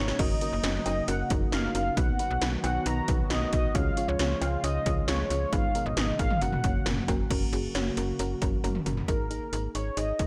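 A straight 4/4 pulse at 135 BPM drives this wistful yet bright synth-pop excerpt in F# major. Up front are 80s electronic pad drums with a punchy kick, gated snare and toms, metallic hats, cowbell and crash; they open on a fill and play another from 8.6 to 9.1 seconds, over a snappy, slap-like FM bass. A velvety, detuned sawtooth lead with vibrato carries the melody, a soft, round pluck with a dark tone supplies accompaniment, and an evolving, resonant pad holds sustained chords until 9.1 seconds. The harmony moves through F#6, B, C#, G#m and F# before arriving on G#sus2 at 9.1 seconds, all set in light reverb and digital ambience with chorus on the lead, pluck and pad and digital delay on the lead.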